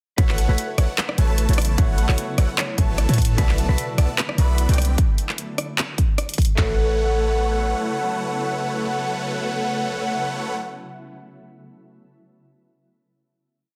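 Bright and lush, this short future bass piece opens straight into a half-time drop where punchy, up-front kick and clap drums and a second overdriven kit with hat rolls and rim clicks play alongside a deep, boomy 808-style bass, while huge detuned supersaw chords with phaser play a dotted riff over a worn concert grand piano, a dark clean electric guitar melody, an airy chorused lead and a shimmering granular pad, all pumping to the sidechain before the drums stop near 6.7 seconds, the bass drops out at 7.7 seconds and the remaining parts ring out on a final chord in a dense, heavily limited mix.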